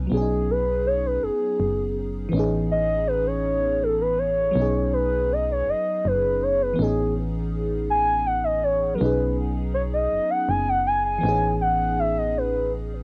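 Sensual and tender, this slow R&B in 6/8 moves at 54 BPM with a straight feel in B mixolydian, cut from a longer piece. An FM electric piano with a soft pad layer sets a lush, dreamy bed with chorus, phaser and cassette tape colouring, alternating between B6 and Amaj9#11 chords throughout. Beneath it, a solid FM bass stays low and round, punchy and dark, holding the ground from the first moment to the end at 13.0 seconds. Above, a gliding portamento lead carries a soft synth solo from 0.1 seconds, its sine tone smooth and sustained with vibrato, chorus and tape flavour, sitting up front over the accompaniment. Light reverb and the character of a home cassette recording give the whole a close, intimate feel.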